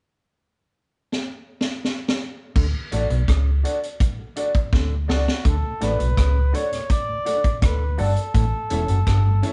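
A warm, lightly vibrato-tinged flugelhorn carries the melody from 5.1 seconds in this laid-back, uplifting roots reggae excerpt at 83 BPM in D major, over a vintage drum kit with a high-tuned snare and punchy kick, a round hollow-body electric bass, a mellow guitar with slapback echo, woody upright piano stabs, a stringy auto-wah clav riff and a very quiet tonewheel organ with slow rotary speaker, all in one lightly reverberant room.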